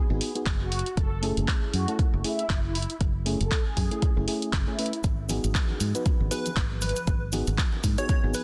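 Late-night and hypnotic, this deep house excerpt at 118 BPM in G# phrygian sets a soft, horn-like synth lead with phaser and tape echo over chorused FM electric piano stabs, a round, foam-muted fingered bass pumping alongside them, handclaps and hi-hat from the drum kit, and an up-front deep kick, with grainy cabasa arriving at 5.0 s, distant congas soon after, and a punchy, detuned unison pluck taking the melody from 6.3 s over G#m7 and F#m7 chords.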